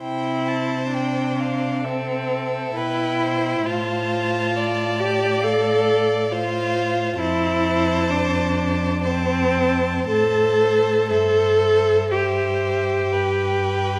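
In a freely breathing, rubato 4/4, this slow romantic classical movement for string quartet unfolds with a warm, serene mood, its harmony moving from C through F/A and F to C/G before arriving on G at 13.1 seconds, in a passage cut from a longer piece. A rich, smooth first violin sings the melody high above a clear, close second violin's line, while an up-front viola carries an expressive accompaniment full of vibrato and portamento. A distant, even cello anchors the bass, and all four bowed players sit in a moderate recital hall reverb.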